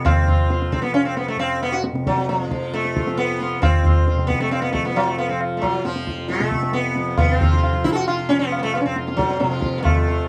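Sitar and tanpura open together in this radiant, meditative passage of Hindustani classical music, cut from a longer performance in a steady, straight four. The plectrum-plucked sitar carries the melody up front, its round, buzzing tone shimmering with sympathetic strings. Beneath it, the softly plucked tanpura holds a low drone with its own bright, buzzing sheen. The tabla joins at 0.1 seconds, low-tuned and ringing with a vintage, band-limited character. Around 7.2 seconds the music moves into a new section, and all three parts carry on to the end, set in a moderate small-room reverb within a dark, warm production.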